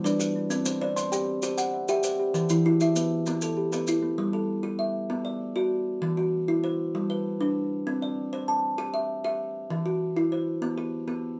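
In a straight 12/8 at 131 BPM, counted in dotted quarters, this rippling, warm piece of southern African traditional music turns an mbira-style interlocking cycle through G, C and E minor, later touching B minor and Esus2. Two kalimbas play arpeggios with a woody, hollow-box thumb pluck. One sits up front, airy and ringing, and carries on to 11.4 seconds, while the darker, smoother one, carrying a slapback echo, drops out at 4.3 seconds, just after the grainy, mellow maracas stop at 4.0 seconds. Light reverb gives the sense of a band playing live in one room, and the clip is cut from a longer piece.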